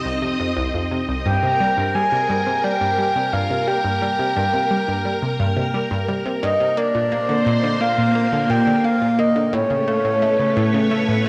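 A wet plate reverb with a long tail washes over this hypnotic, expansive slice of ambient, sequencer-driven space music, lifted from a longer piece. A lush, vintage string machine sits up front from the first moment, holding full-bodied sustained chords through its ensemble chorus with a slow, swelling attack and a sub-octave weight underneath. Almost at once an analog pluck joins in the low register with a repeating riff, its round, nasal sawtooth tone snapping in with a fast attack and short decay, coloured by chorus, phaser and analog delay. At 1.3 s a breathy, flute-like synth lead enters high above with a sustained melody, soft-edged and gently vibrato-tinged, carrying a subtle chorus and its own analog delay. The harmony drifts from C minor through G minor and B-flat before settling on A major near the close.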